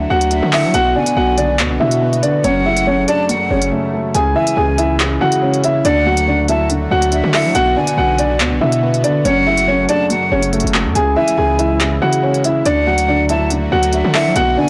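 A half-time drill groove of crisp hi-hats, handclaps and rim clicks sets a cold, ominous hip hop mood, with a heavy, distorted 808-style bass decaying beneath it and a brief break near 3.7 seconds before the section repeats. Up front, a dark, vintage grand piano carries the melody through digital delay over a soft, felt-muted upright piano, while a bright, detuned sawtooth pad with chorus sustains chords in the background. A breathy, hollow jazz flute, distant and also delayed, adds a high second line, and the whole cut sounds blown-out and overdriven in a light reverb.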